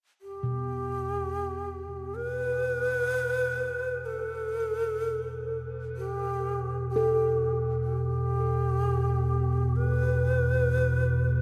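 Ambient in free time, this desolate, ominous excerpt sets a breathy, bamboo-toned shakuhachi melody with vibrato, entering at 0.2 seconds, over a dark, rumbling drone with subtle chorus and gamelan-type bossed gongs whose mellow, bronze arpeggios pass through analog delay, all suspended over an Asus2/E chord in a dreamy mix soaked in plate reverb.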